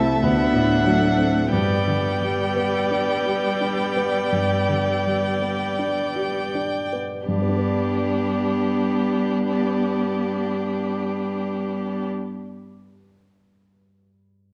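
A dark, mellow grand piano sits up front in this serene, slow romantic movement for piano quintet in G major, drifting with rubato at 39-50 BPM and slowing over the opening 7.3 seconds, as a rich, distant violin sings the smooth, vibrato-laden melody over a second violin's even, vibrato line, a focused cello and a background viola with expressive portamento, until the strings stop at 12.1 seconds and the short-sustained piano carries on alone to 14.5 seconds, all bathed in recital hall reverb and the warbly pitch drift of worn cassette tape in this fragment cut from a longer piece.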